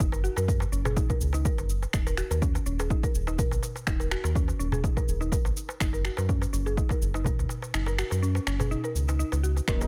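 A punchy, overdriven electronic kick drives this afro house cut at 124 BPM with a light 16th-note swing, sitting up front beside a round, deep analog bass whose sidechain pumping gives the groove its breathing push over Gb and Eb7(no3) chords, tuned to A4 = 445 Hz. Woody, mellow FM mallet-like plucks spin arpeggios through chorus and digital delay, while layered, overdriven electronic shaker and finger snaps join a close, dry clay-shell darbuka in the percussion. The kick drops out from 7.7 to 9.7 seconds, and then a soft, hollow-toned kalimba note and a smooth, detuned analog pad with slow attack and chorus arrive just as the excerpt ends, all set in a driving, warm mood with a digital ambience.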